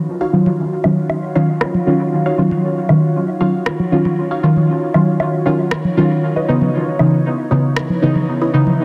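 A straight 4/4 pulse at 117 BPM carries this meditative, nocturnal dub techno excerpt in Eb minor, where a full-bodied, up-front chord stab with chorus, phaser and dub echo sits over a moody, sustained ambient pad with 12-bit sampler grit, while a muted, filtered dub stab riff, background congas and woodblock, and a tape-warm electronic rim click arriving at 1.6 s drift through huge ambient reverb and a drum filter sweep as Ebm9 moves to Dbm9 at 6.2 s.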